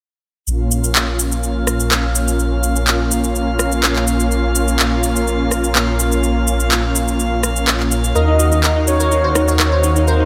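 This dreamy, expansive progressive house excerpt rides a straight 4/4 pulse from layered electronic shaker, handclaps and rim click, which sit up front from 0.5 s. Beneath them, a deep, rumbling detuned saw bass with tube saturation anchors the low end, while a lush supersaw pad holds sustained chords under a low-pass filter sweep. From 0.8 s a calm glass-harmonics texture floats high above, its drifting overtones softened by chorus and its own built-in reverb. At 8.2 s the harmony shifts as a thick, bold unison lead with vibrato and delay brings in a melody, joined by a crystalline wavetable pluck playing arpeggios through chorus, cassette tape coloring and delay. Light reverb gives the whole mix a gentle sense of space.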